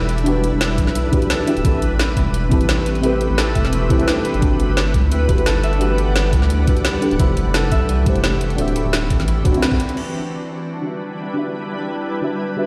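A 173 BPM liquid drum and bass groove with a light 16th-note swing drives this melancholic, soulful passage in E minor. An overdriven electronic drum kit of woody snare, bright hi-hats and crash cymbal is joined at 0.8 seconds by a knocking, layered kick, while a thick, saturated sine sub bass sits up front until 9.5 seconds. Overhead, deep, dark chord stabs with chorus, phaser and delay mingle with a shimmering, ethereal pad carrying 12-bit sampler grit and sidechain pumping, and a ringing, fingerpicked Celtic harp arpeggiates through tape echo over chords moving from Em7 through Am9, Gmaj7, Fmaj9 and D9. Everything resonates in a bare stone room, and a band accent lands at 9.6 seconds.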